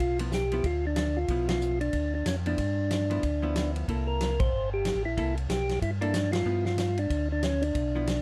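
A percussive tonewheel organ melody with third-harmonic percussion and slow rotary speaker opens this bluesy, soulful soul jazz organ trio excerpt at a swinging 186 BPM in G mixolydian, over a round, dark organ bass line with key click and vibrato, a vintage acoustic drum kit with a fat snare, punchy kick and rolled-off top on hi-hat and ride, and a clean, compressed hollow-body archtop guitar comping from 0.2 seconds, as G6 moves to C13 and back with band accents at 1.5, 4.4 and 6.3 seconds in a dry, up-front sound.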